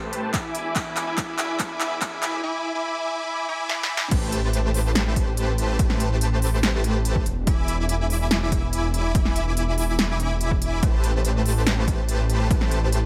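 A huge, detuned supersaw riff opens this bittersweet future bass passage at 143 BPM in A minor, heard through a cassette-tape haze with dub echo and a filter sweep across the build-up. Underneath, a thick, chorused saw bass sits low and up front, both parts pumping against the sidechain as the chords move between Am9 and E7. Drum fills from a big-room dance kit, joined early by a punchy, overdriven electronic kick, push the build-up toward the drop at 4.1 seconds, where the half-time groove settles in with a punchy snare, crisp hats, handclaps and crash cymbals, all re-recorded in a large room. The supersaw stays compressed and sustained with vibrato, while the bass keeps a mellow, saturated weight. Light reverb rounds out a lush, bittersweet mood that feels like a moment lifted from a longer track.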